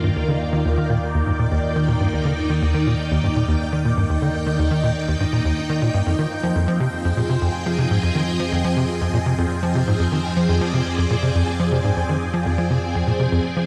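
Ambient, sequencer-driven space music with a cosmic, hypnotic mood, where a tight, punchy sequencer bass drives a plucked sawtooth riff through subtle chorus and tape echo, a bright, swirling phased string machine holds sustained chords up front with ensemble chorus and shimmer reverb, and an evolving, detuned analog drone sits in the background, all over a moderate plate reverb as the harmony moves from Ebmaj7 to Fm7 at 6.1 seconds in this short cut from a longer piece.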